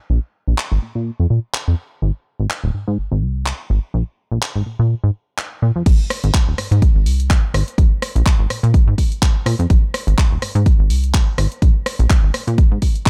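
Filtered disco house at 125 BPM in Ab major, joyful and funky, with a 16th-note swing. A punchy, up-front sawtooth-and-square analog bass opens with a fast-attack, decaying filter pluck, sidechain pumping and a filter sweep. A tape-warm, layered house kit of handclaps, hi-hat, rim click and crash cymbal joins at 0.6 s, its hats and cymbals pumping, and the drop arrives at 5.9 s as a punchy electronic kick enters up front, all in a dry mix cut from a longer piece.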